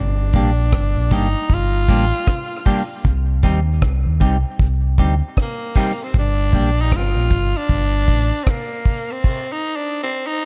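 Dub reggae with a meditative, spacious mood, this short cut from a longer piece moves at an unhurried pace with a lilting swing on the sixteenth notes. A raspy, close-miked tenor saxophone carries the melody up front, its gritty tone colored by vibrato, scooped notes and tape echo, and it plays on to the end at 10.5 seconds. Beneath it, a deep fingered electric bass sits round and punchy in the foreground, while an acoustic reggae drum kit with a tight kick, hi-hat, rim click and crash cymbal sounds dry and smooth with a rolled-off top. A clean, hollow-body electric guitar adds fingered accompaniment, treated with tape echo, and drops out at 6.7 seconds. The harmony moves from G minor to C minor and back before a stop at 9.2 seconds. The bass has already fallen away at 8.3 seconds and the drums follow at 9.5, leaving the saxophone alone over a dark production with little reverb.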